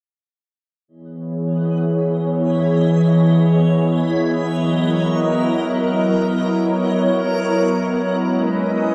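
Spacious and hazy, this hip hop excerpt drifts in free time in C# dorian, as a glassy, ethereal FM pad sits up front from 0.9 s, holding sustained chords from C#m9 to Bmaj7 and back under ensemble chorus, its own reverb and a filter sweep. At 1.6 s a reversed, granular texture joins further back, dreamy and bright with a soft attack, and both parts carry on to 8.9 s. The whole is wrapped in a moderate shimmer reverb and a dry, gritty cassette tape sound.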